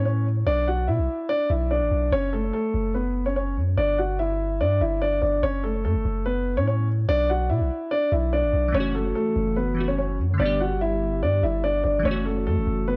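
A dry, gritty cassette-tape sound with studio reverb frames this cold, tense half-time drill cut, where a dark, intimate grand piano with audible action noise carries the low-passed melody over a deep, long, sustained 808-style bass, and glassy, detuned digital keys with chorus and a filter sweep join as accompaniment at 8.7 seconds.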